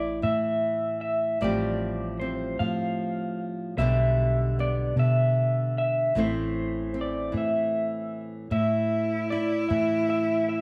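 Haunting and melancholic, this short fragment of a longer acoustic folk piece unfolds in a slow, straight 6/8 as a small band plays live together in one room. Up front, an electric guitar played through a small old amp carries the melody in a narrow upper range, its dark, slightly broken-up, lo-fi and compressed tone shimmering with tremolo. Beneath it, a nylon-string guitar fingerpicks a bright accompaniment with fresh strings, while a hollow-body short-scale electric bass adds a round, punchy low end. The harmony moves from A5 through Fadd9/A, G/B and Am before returning to A5, and at 8.5 s a single bright cello enters with a biting, intense bowed line on E4 colored by vibrato. A wet studio reverb surrounds the ensemble, lending the intimate performance a spacious, lingering air.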